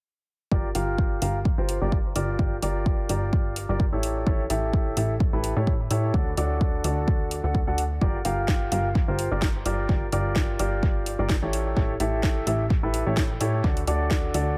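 At 0.5 seconds a clear, intimate baby grand piano riff starts, with audible action noise, sidechain pumping, a low-pass filter and dub echo. Alongside it come a plucky, detuned analog bass that also pumps to the sidechain, and a punchy, overdriven electronic kick sitting up front. This soulful, bittersweet piano house passage in G minor runs at 128 BPM with a 55% swing on the 16ths. A house kit joins at 0.7 seconds with cracking snare and bright hats, also overdriven and treated with dub echo. The harmony cycles twice through Gm7, A7 and D in an echo-heavy mix with light reverb, and the piece is cut from a longer work.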